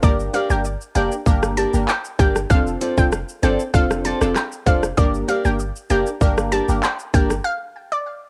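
A straight 97 BPM dancehall groove in 4/4 drives this tough, sultry excerpt, with an up-front electronic island pop kit of tight kick, metallic hi-hats, handclaps, rim clicks and shaker, all overdriven and given a cassette-tape grit, over a deep, boomy, sine-like 808-style bass. Punchy, nasal synth brass stabs with chorus and phaser and a round, detuned analog pluck melody with a noise layer, filter sweep, chorus and tape echo ride over Gm and Dm7/F, while a bright fingerpicked nylon-string guitar enters at 0.3 s with classical arpeggios. The whole sits in light reverb with a homemade cassette character, and the harmony drops out for a short break at 7.5 s.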